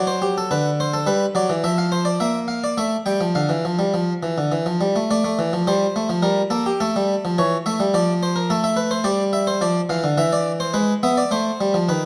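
In a straight 3/4 at 105 BPM, this solemn, contemplative baroque-style two-part invention in D minor, cut from a longer piece, features a solo French-style harpsichord with a round, plucked tone on a single set of strings, placed up front and captured in close detail within a wet recital-hall reverb, as its opening phrase gives way at 5.1 seconds to a second section that settles on A minor at 11.3 seconds.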